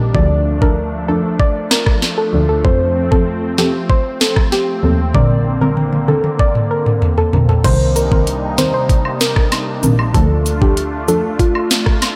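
Dancehall with a sultry, hypnotic mood, cut from a longer piece, built on a lush, airy unison pad with chorus, phaser and sidechain pumping, deep mellow chord stabs, and a soft, round, wave-folded pluck melody trailing a diffuse ambient delay. Beneath them, a bowed double bass with expressive vibrato and portamento sits close, while an up-front, overdriven electronic drum kit with a knocking kick, sharp snare and metallic hats plays a fill from 5.1 to 7.6 seconds. Cabasa and woodblock join at 8.0 seconds, and the whole dreamy mix is soaked in a lush hall reverb.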